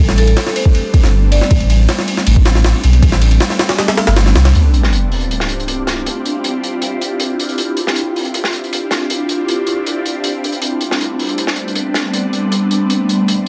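A straight 4/4 drum and bass and jungle groove at 158 BPM opens with a gritty, overdriven sampler-style kit of thumpy kick, high-tuned snare and ride, alongside a thick, saturated sub bass and a brief, woody marimba figure in the background. At 4.5 seconds a sub drop impact hits and a dark, crunchy breakbeat kit of hi-hat and snare takes over. Throughout, an ethereal, airy pad drifts through chorus and phaser, giving this nostalgic, raw excerpt in D dorian its hazy, vinyl-crackled glow.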